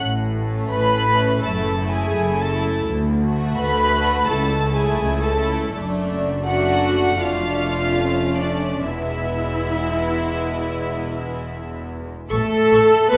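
A wet scoring-stage reverb surrounds this serene excerpt of a slow romantic movement for string orchestra, played with rubato. Rich double basses and a distant, floating cello section begin together at 0.0 s, and a close, pure second violin line joins at 0.4 s. At 0.7 s a dark, intimate viola section with light vibrato enters beside the up-front violin melody, which has a soft attack and smooth top; every section bows sul tasto as the harmony moves through F#m7, D6 and A/C# before resting on an E chord.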